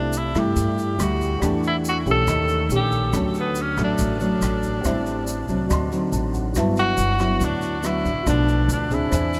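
A clear, up-front tenor saxophone with light vibrato, scooped notes and a touch of delay leads this sunny, breezy bossa nova fragment, carried by a full-bodied, thumb-plucked nylon-string guitar, a woody, growly pizzicato upright bass, a dark, mellow baby grand piano in the background that slips in a brief fill at 5.9 seconds, brushes with a boomy kick on a very quiet drum kit, and a grainy tube shaker, all floating in a dreamy, reverb-soaked mix.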